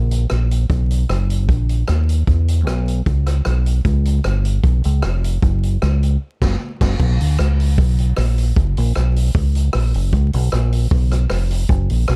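A round, deep dub fingered electric bass anchors this mischievous, energetic ska excerpt at 153 BPM, backed by a swinging big-band acoustic drum kit with a punchy kick, medium-tuned snare, rim clicks, hi-hat and crash cymbal, both up front in a dry, dark production touched with vinyl crackle, with a band accent from 6.2 to 7.0 seconds before the music moves into a new section.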